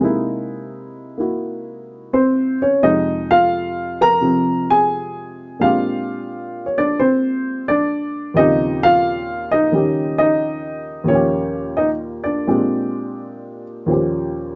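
A woody upright piano with short sustain sits up front in this solo jazz passage, cut from a longer piece. It moves at 87 BPM in 4/4 with a swung, rubato feel in E-flat mixolydian, spanning Eb2 to Bb5 over a progression that runs from C7alt through Fm7 and Bb13 to Eb13. The mood is warm and swinging, with light reverb and a mellow, softened top end.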